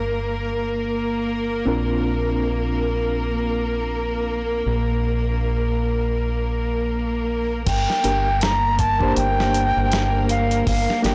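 A pure wooden flute with a crisp attack and lifted highs enters at 7.7 seconds, floating its melody over a smoky, dark trip hop groove at 80 BPM in G minor. At that moment it is joined by a gritty, thumpy, tape-warm sampler-style soul drum kit with snare and crash. From the start, a reedy electric piano with tremolo and tape echo shares the harmony with a smooth, bowed chamber string section roughened by 12-bit sampler grit. Meanwhile a deep, round dub bass sits up front with tube saturation, moving from Gm to Bbadd9 and back. The whole cut has a blown-out, overdriven sound with light digital ambience, and it is taken from a longer piece.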